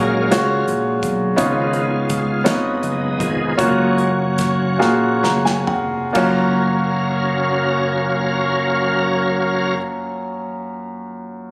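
A slow 6/8 pulse of roughly 42 to 57 beats per minute in dotted quarters gives this soulful, uplifting gospel excerpt, cut from a longer piece in F# major, a patient, swaying feel that begins to slow down at 1.4 seconds. A bright tonewheel organ leads with a solo over sustained chords, its full, shouting tone sitting up front and colored by a slow rotary speaker and chorus vibrato. A clear grand piano accompanies throughout, while a fingered electric bass adds a dark, round low end, and a natural country drum kit with a punchy kick, medium-tuned snare, hi-hat, toms and crash cymbal brings an airy, polished studio feel. The harmony moves from F#maj9/A# to C#9 at 1.4 seconds and on to F#maj7 at 3.6 seconds, and at 4.8 seconds the drums and piano each play a fill. After the organ and bass stop at 9.8 seconds, the piano carries on alone, all within a small, lightly reverberant room sound with a compressed, phone-recorded intimacy.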